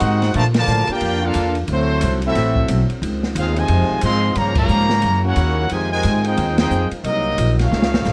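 Light reverb frames this swinging, dramatic big band jazz at 179 BPM, with a clear, tightly played trumpet section carrying the melody over a bright trombone second line and very quiet, dark saxophone chords, a woody, growly upright bass up front, and a smooth, rolled-off acoustic drum kit with a boomy kick, as the band hits accents at 0.5, 4.5 and 6.5 seconds over extended jazz harmony before a drum fill at 7.7 seconds.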